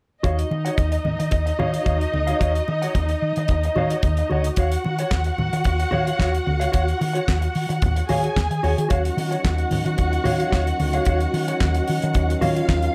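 A lush, dark symphonic string section sits up front with expressive vibrato and a smooth top, carrying the second line over a sultry, danceable disco groove in straight 4/4. Beneath it, a round, amped hollow-body short-scale electric bass plays fingered lines, while a clean, compressed electric guitar adds mellow accompaniment. The damped 70s drum kit is dry and close, with a fat snare, tight kick, hi-hat and handclaps, and very quiet, low-tuned congas played with soft hands add a bright, thin-skinned tone. At 8.9 seconds a mellow French horn section enters with sustained, classical-style chords carrying light vibrato. The whole passage rests on a single Ebm9 chord, set in light reverb and small room ambience, and it is cut from a longer piece.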